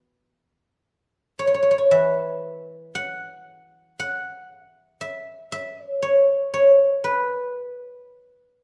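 A solo guzheng, played with fingerpicks and sitting up front with a silvery, ringing tone in light reverb, carries this flowing, elegant excerpt of Chinese traditional music at a rubato 58 BPM in 4/4, ranging from E3 to F#5 across its 8.6 seconds.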